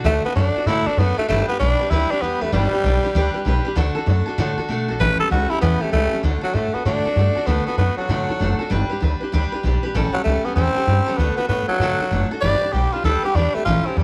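Set in a light studio reverb, this retro, rollicking rockabilly cut from a longer piece swings, with a raspy, close-miked tenor saxophone growling out the melody up front over a woody, thumpy pizzicato upright bass and a full-bodied picked jumbo steel-string acoustic guitar. The sax solos with bright vibrato and gritty pop-style bite while the guitar picks out an accompaniment around D, G and A7, and the tune shifts into a new section at 6.2 seconds.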